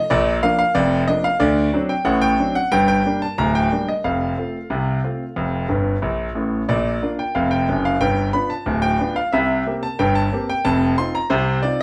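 A wet studio reverb and a live-room sound surround an intimate, up-front concert grand piano, whose clear tone carries deep bass, long sustain and audible action noise. This cheerful, lively ragtime passage, taken from a longer piece, moves at 91 BPM in a straight 2/4 in Bb major, tuned to A4 = 441 Hz, with the solo piano ranging from D1 to C6. The harmony travels from Bb through D7, Gm and F, and a piano fill at 5.7 seconds leads back to Bb before G7 and C5 carry it toward a closing F5.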